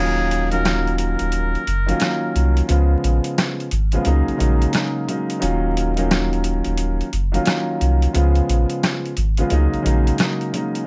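A swung boom-bap groove at 88 BPM in 4/4 drives this short cut from a longer piece, with a sampler-style kit of hi-hat, rim click and a medium-tuned snare entering at 0.3 seconds, pitched down, compressed and gritty. The mood is reflective yet tough, set in E-flat minor over a cycle of Ebm9, Db7 and Gb69 chords in a break section. A dark concert grand piano carries the harmony throughout, its boxy, long-sustaining tone colored by a cassette-tape character, while a round sine sub bass sits up front with a deep, mellow weight. At the opening, a trumpet with a metal mute plays a brief jazz-style solo phrase between Ab4 and Bb4 until 2.6 seconds, buzzy and thin with light vibrato and a tape echo trailing behind it. Light reverb and a layer of vinyl crackle give the recording a worn surface.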